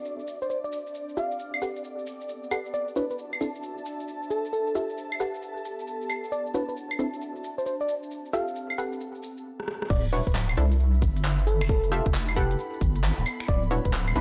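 Soulful and bouncy, this two-step UK garage excerpt at 134 BPM in D major swings on its 16ths as an ethereal, airy pad and a warbly, nostalgic tape-like pad pump under sidechain, a bell-like FM electric piano sparkles with a mellow lead, punchy sawtooth chord stabs arrive at 1.2 seconds under a filter sweep, and a garage kit of crisp hats, claves, snaps, handclaps, rim clicks, shaker and crash rolls into a fill before the drop at 9.9 seconds brings in a tight electronic kick and a deep, dark, up-front wobble bass, all through a dry, gritty hardware sound with transformer saturation.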